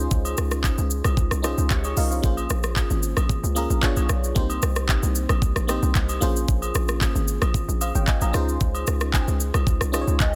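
A straight 4/4 amapiano groove at 113 BPM in Bb dorian, its electronic kit of knocking kick, crisp hats, rim click, handclaps and shaker up front beside a bouncy, hollow log drum bass, sets a late-night, hypnotic mood as a glassy, bell-like FM electric piano with chorus moves through Dbmaj7, Bbm7 and Cm7 and adds a fill at 1.4 seconds, distant agogo bells and woodblock sound in a large room, and a woody, mellow synth lead with chorus and phaser enters only at 10.2 seconds in this dense, heavily limited, dry fragment of a longer piece.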